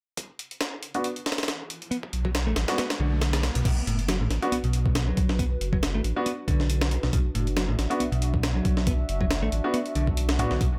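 A swung breakbeat drives this energetic, gritty breaks excerpt, its compressed sampler-style kit sitting up front with a thumpy kick, a high-tuned snare, hi-hat and crash, each piece high-passed and carrying the sound of a small room. A grand piano with audible action noise plays stabs through a low-pass filter and dub echo, with a filter sweep across the opening stretch, while a faint electronic riser builds in the background until about 3.7 seconds. Beneath it, a bright, growly picked electric bass riff, also echoed, joins a deep, thick saturated sub bass. At 3.6 seconds a warbling, nostalgic pad of sustained chords arrives, lo-fi and detuned, with chorus, phaser, built-in reverb, vintage 12-bit sampler crunch and sidechain pumping. The mix stays dry and close, and the passage is cut from a longer piece.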